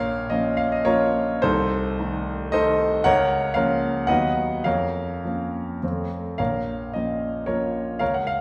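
A solo grand piano opens at once, intimate and up front, its action noise audible and its long sustain ringing into the wet reverb of a recital hall heard from further back in the room. It is a romantic character piece in a three-beat metre, played with rubato, with a bittersweet, stormy mood as the harmony passes through diminished and major chords before settling back on the home minor chord at 6.4 seconds. The playing spans from Bb1 to Gb5 in this short fragment cut from a longer piece.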